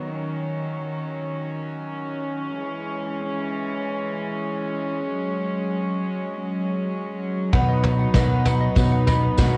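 Uplifting and nostalgic, this short indie folk excerpt in B major moves at 97 BPM in a straight 4/4, its arrangement building as it goes. It opens with a chamber string section, bowed and pure with a soft attack and a floating, distant quality, holding sustained chords that move from a rootless B through C#m and F#sus2. At 7.5 seconds the band arrives on a B chord: a bright, boxy picked twelve-string acoustic guitar with a shimmering, octave-doubled tone, a dark, round fingered electric bass sitting prominently on B, and a roomy brush drum kit with a tight kick, medium-tuned snare and toms, its top rolled off. A light, fingerpicked ukulele adds arpeggios in the background through tape echo, and a jingly tambourine joins quietly at 7.8 seconds. The whole piece carries the studio ambience of a home recording on cassette, and it ends at 9.6 seconds, cut from a longer piece.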